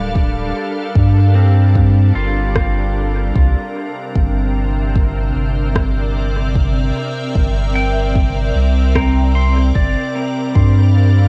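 A bright, detuned organ-like pad with chorus and its own reverb opens this deep, spacious ambient dub excerpt, joined at once by a twangy, fingerpicked pedal steel guitar playing slide arpeggios with volume swells through analog delay, and a round sine sub bass sitting up front with tube saturation. A layered electronic kick enters at 0.2 seconds on a swung sixteenth feel, and a dub-echoed rim click plays from 2.6 to 9.1 seconds as the harmony moves from Gm7 to C7 and returns to Gm7. The dry home cassette recording lends the pad, steel and drums a tape-worn grain.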